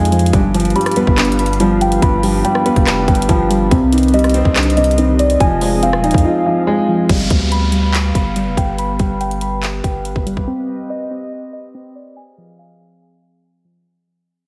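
A half-time trap beat at 142 BPM drives this brooding, menacing hip hop excerpt in 4/4, with a hard-clipped kick, metallic hi-hats, handclaps, rim clicks and crash sitting up front beside a deep, sine-toned 808-style bass that holds long decaying notes over a G7, Cm(add9) and Fm7 progression. Above them, muted felt-like synth keys spin soft, chorused arpeggios through a delay, a boxy, dark grand piano with audible action noise adds mellow accompaniment, and a warbling, lo-fi tape-like pad with detuned sawtooth tones and a moving notch sustains nostalgic chords low in the mix. After a silent gap from 6.2 to 7.1 seconds the piano drops out, a downlifter enters and the music fades under a filter sweep, all captured with light reverb and a heavily compressed, radio-like sound.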